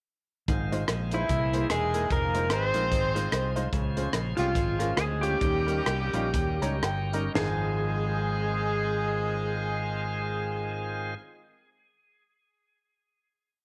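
A swung, crisp fusion drum kit drives a two-beat praise groove under punchy walking and running bass with slides and chromatic approach notes, lifting this soulful, reverent uptempo gospel piece until the drums drop out at 7.5 s. A baby grand piano adds off-beat chords and a short fill from 6.3 s, while a bright, shouting tonewheel organ holds lightly overdriven chords through a slow rotary speaker with audible key click. From 1.1 s a loose horn section carries song-like motifs in octave doubling, and a clean lap steel guitar adds call phrases, volume swells and tape echo in the background as the tempo eases into a sustained final chord in light studio reverb.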